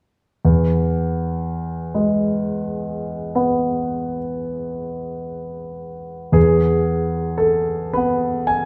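Bathed in a wet scoring-stage reverb, this serene, nostalgic romantic nocturne in E major features a clear, polished concert grand piano, up front with deep bass and short sustain, playing solo in a rubato 12/8 at roughly 33-44 dotted-quarter beats per minute from 0.4 to 8.7 seconds, a brief fragment cut from a longer piece.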